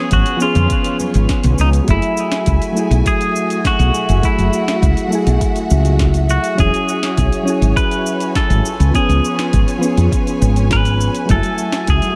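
Sunset chillout with a wistful, relaxed mood: a bright, twangy clean electric guitar carries the melody through tape echo over soft, warbling electric-piano-like synth keys bathed in chorus and dub echo, lush bowed strings hold sustained chords, and a round, up-front woody fretless bass anchors the low end, while an overdriven electronic kick and a smooth R&B drum kit with sharp snare, hi-hat and shaker keep a straight 4/4 feel, very quiet congas surface at 0.5 and 11.3 seconds, and the echo-heavy mix sits in light reverb and digital ambience as a cut from a longer piece.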